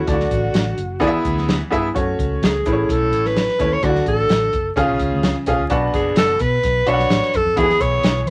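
Uptempo 1960s-style soul with an urgent, driving feel, in which a breathy, whispered alto saxophone with vibrato and a soft attack carries the melody up front over a brilliant, woody upright piano, a round, foam-muted electric bass and a dry, dark drum kit with a tight kick, all set in a small room with vinyl crackle in this short cut from a longer piece.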